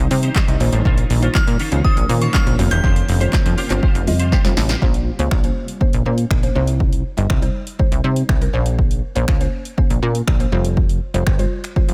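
A deep house drum kit drives this bittersweet, energetic dance-pop excerpt in straight 4/4, its punchy kick and snare sitting up front with finger snaps, handclaps and warm hi-hats, and a drum fill closes the opening passage from 4.3 seconds. A plucky analog bass carries the low end throughout, funky and evolving with a fast filter pluck and sidechain pumping, while a woody, round mallet-like synth pluck adds percussive accompaniment treated with chorus, phaser and the same pumping. In the first half, a bright, twangy twelve-string electric guitar plays a clean, picked riff with ensemble chorus, and a very quiet granular cloud pad holds blurred, detuned chords underneath. From 1.3 seconds a crystalline synth bell traces a high melody, coloured by chorus and tape echo. Once the guitar, pad and bell stop near the 4.8-second mark, the bass, pluck and drums continue over a chord cycle moving between minor, suspended and added-ninth harmonies, all set in a digital ambience.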